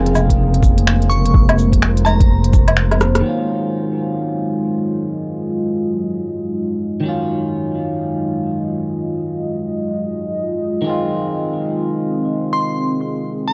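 A deep, rumbling detuned saw bass anchors this nocturnal, ghostly future garage cut from a longer piece, pumping under the sidechain alongside a muffled, pitched-down thumpy kick and a crisp, organic electronic kit of hi-hat, rim click, finger snaps, cabasa and woodblock that swings on the 16ths. A moody, evolving ambient pad with chorus and its own reverb holds sustained minor chords. A clean, twangy electric guitar with analog delay also breathes with the sidechain. A glassy, crystalline FM bell flashes a brief phaser-tinged melody from 1.1 seconds, while a very quiet, flickering granular texture hovers beneath. The kick falls away at 2.6 seconds, and after a short drum fill, the bass and kit drop out at 3.2 seconds, with the texture fading just after. Guitar and pad then drift until the bell returns at 12.5 seconds. The sound is dry and gritty, with light reverb and a cassette-tape character.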